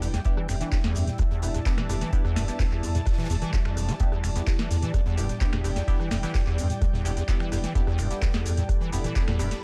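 A raw, trippy acid house groove at 128 BPM in E phrygian opens on a dark, detuned sawtooth pad holding an Em7 chord alongside a squelchy, resonant square-wave acid bass riff with tube saturation, a thick saturated sine sub bass, nasal band-passed chord stabs with phaser and delay, an airy, breathy pad, a booming analog drum machine with a tonal snare and metallic hats, and a very quiet gated 80s kit snare and hi-hat, before a deep, up-front electronic kick drum arrives at 0.3 seconds, with sidechain pumping on the pads and basses in a dark, dry production.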